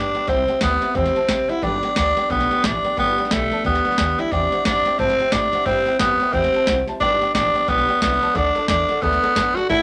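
A swung 4/4 rockabilly groove from a booming analog drum machine, with a deep kick, crisp snare and metallic hats, drives this upbeat, retro excerpt, as a raspy, growling tenor saxophone carries the melody up front over thumpy pizzicato upright bass, while a bright picked steel-string acoustic guitar and a clear upright piano sit in the background beneath moderate studio reverb.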